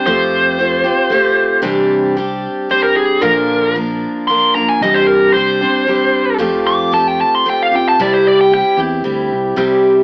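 Hopeful and open-road in feel, this short folk rock and heartland rock passage in 3/4 is cut from a longer piece and has the lo-fi tint of a home cassette recording heard through AM radio, with moderate booth ambience. A dark, smooth overdriven lead guitar carries the melody as a solo until 8.8 seconds, up front over a bright, full-bodied picked steel-string acoustic with fresh strings, both colored by cassette tape. Beneath them a round, direct fingered electric bass sits low in the mix, moving through Fadd9, Cadd9 and Bb changes.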